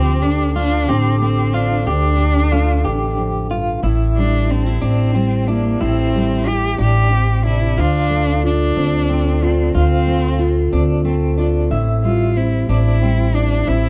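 Acoustic folk for a duo or small band, this reflective, intimate piece moves slowly at 61 BPM in a straight 6/8, set in D minor with tuning just above standard at A4 = 441 Hz. A single bowed cello carries the melody up front, rich and expressive, with vibrato and portamento colouring its line between Bb3 and G4. Beneath it, a fingerpicked steel-string dreadnought with fresh strings gives full-bodied support, while a pizzicato upright bass sits prominently in the mix, woody and dark in its low register. An electric guitar through a small old amp adds arpeggios higher up, its lo-fi, slightly broken-up tone compressed and shimmering with tremolo. The harmony alternates between Dm7 and Am7, with a new section arriving at 3.8 seconds, and the dry, close sound recalls a 1970s studio in this short cut from a longer piece.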